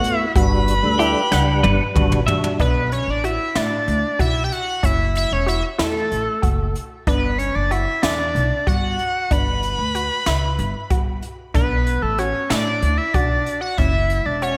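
An edgy, tearing sync lead sits up front with vibrato and slapback echo in this tense, intricate progressive instrumental in 7/8 at 188 BPM in B minor, over airy brushed jazz drums with a high-tuned snare and boomy kick, a woody pizzicato upright bass, and a round, nasal analog pluck arpeggiating in the background, while a fat, key-clicking tonewheel organ with slow rotary and a clean, picked semi-hollow guitar entering at 1.0 s both drop out at 2.6 s after a drum fill, all set in a big, reverberant arena-like space.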